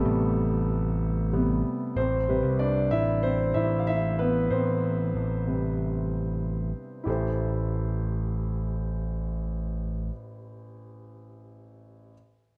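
The recording sits in a moderate scoring-stage reverb with a 1.7-second decay and a touch of small-room ambience, placing two up-front instruments in a sense of space. This is a driving, dramatic piano-driven pop passage in A minor at 94 BPM in a straight 4/4, cut from a longer piece and opening on an Am7 chord. A warm concert grand piano with deep bass and an open tone plays the accompaniment across a range from A1 to F5, and it takes solo passages through the first 7.1 seconds. Beneath it, an overdriven picked electric bass adds a dark, amped, round and punchy low end, staying between A1 and C2 before it stops at 10.1 seconds. The piano then carries on alone until the clip ends at 12.1 seconds.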